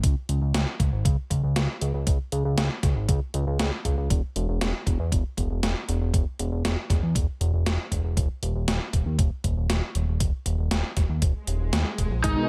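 A driving, straight 4/4 synthwave groove opens this nocturnal excerpt, built on a thumpy electronic kick and a gated 80s digital drum machine whose hi-hat and snare carry a tape-warm, gated-reverb snap, as if re-recorded in a small room. Underneath, a fat analog bass holds the low end up front, its thick, detuned sawtooth and square tones moving through a filter sweep and a shifting notch while staying mellow and sustained. The harmony moves from C#5 to an unharmonized stretch at 4.1 seconds and then to D#5, and an electronic swell arrives at 11.4 seconds to mark the turn. At 12.2 seconds the texture blooms as a lush, warbling unison pad enters with chorus and sidechain pumping, joined by an overdriven, picked electric lead guitar through a small cranked amp and a punchy, full-bodied unison pluck playing arpeggios in the background. A digital ambience surrounds the whole mix, and the piece breaks off just as this fuller arrangement arrives.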